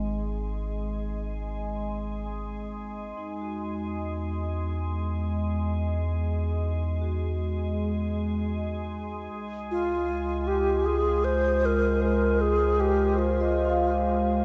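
Ambient in free time, this short excerpt from a longer piece feels luminous and warm, set in a huge, moderate reverb with a long decay. A vibraphone played with medium mallets fades in across the whole 14.4 seconds, its metallic, ringing arpeggios carried on shimmer reverb and diffuse ambient delay. Beneath it, a round sine sub bass sits deep and up front, while an organ-like drone holds a calm, sustained Ab, thickened by ensemble chorus, phaser and its own reverb. The harmony moves from Ab to Eadd9 at 3.2 seconds and settles on Db at 9.3 seconds. At 9.7 seconds an airy alto flute enters with a tongued, vibrato-touched melody, bright in the highs and sent into the same shimmer and delay.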